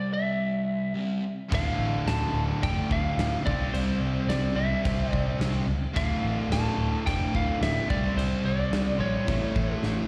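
Hard rock with a driving, heavy mood, cut from a longer piece: a twangy, slightly broken-up lead guitar carries the melody through slapback echo and analog delay over a dark, very quiet sludgy guitar riff from the start. At 1.5 seconds a bright, overdriven cranked stack guitar and a double-tracked high-gain guitar tucked in the background join the riff, along with a growly, up-front picked bass and a big-room acoustic kit with a punchy kick and rolled-off top, moving between D minor and C chords. The kit plays a fill at 9.8 seconds, and the whole band sounds like a live gig heard through a venue's PA, with hall reverb and small-room ambience.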